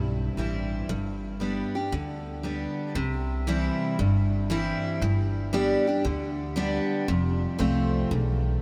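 Honky-tonk and classic country in C major at 116 BPM with a swung 4/4 feel, this short excerpt cut from a longer piece carries a nostalgic, sunny mood over changes from C to G and on to F. A picked steel-string acoustic guitar sits up front with a full-bodied dreadnought tone and lush chorus, while a woody pizzicato upright bass supports it until 8.5 seconds. The dreamy mix is soaked in a huge ambient reverb with a long 8.0-second tail.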